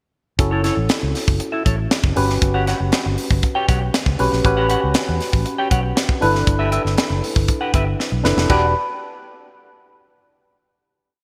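A bright, digital 1980s-style production with a moderate, lush hall reverb frames this short, nocturnal piece of polished jazz-funk pop with an urban feel. A tight funk kit with a high-tuned snare and gated reverb drives a crisp sixteenth-note groove beneath a dark, round, foam-muted fingered bass that runs an agile syncopated line with chromatic approach notes. A worn, slightly out-of-tune tine electric piano with lush chorus pushes rootless chords, a clean semi-hollow guitar with analog chorus plays a sixteenth-note rhythm riff, and a drum fill at 8.0 s leads to a closing Em9 chord at 8.5 s.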